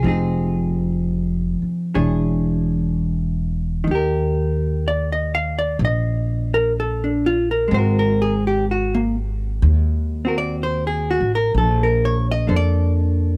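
A vintage hollow-body electric guitar and an upright bass begin together, setting a tender, late-night jazz ballad at a slow 63 BPM in 4/4 with a gentle swing on the eighth notes. The guitar carries the accompaniment with clean, picked chords that sound dark, compressed and hollow, ranging from Eb3 up to F5. Beneath it, the pizzicato bass on gut strings gives a woody, thumpy foundation between E1 and F2. The harmony moves from Fm7 through E6 and Eb to Ab9 at 7.7 seconds, settling on Bbmaj7 at 11.5 seconds, and the tuning sits slightly below standard pitch. Both instruments sit up front in a close, detailed recording with little reverb, and this 13.4-second excerpt is cut from a longer piece.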